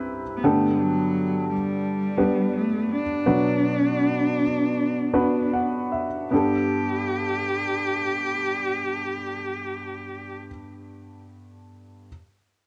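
A warm, woody upright piano opens this anthemic, hopeful pop excerpt in G major at 74-87 BPM, joined at 0.4 seconds by a rich, expressive bowed cello melody full of vibrato and portamento, both up front, as the tempo slows until 6.3 seconds around a piano fill over Gadd9 and Bm chords, all wrapped in wet studio reverb and the warbling pitch drift of worn cassette tape.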